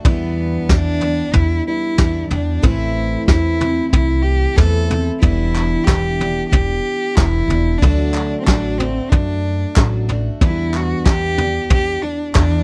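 This yearning, wistful indie folk excerpt opens with a shimmering, octave-doubled twelve-string acoustic guitar, a very quiet, dark felt-muted upright piano and a soft brush kit with a fat snare and punchy kick. A bowed cello carries the melody up front with smooth vibrato, while a woody pizzicato upright bass underpins the Em7, Amadd9 and D changes. Hollow, vintage group handclaps join at 5.6 seconds, all captured in a dry, close 1970s-style studio sound.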